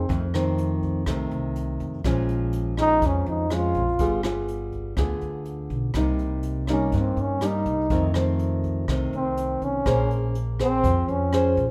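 A short bossa nova excerpt with an intimate, smooth mood, led by a warm trombone solo with vibrato and scooped notes, over thumb-plucked nylon-string guitar with audible finger squeak, growly pizzicato upright bass, and an airy brush drum kit with a boomy kick and rim clicks, all in light reverb.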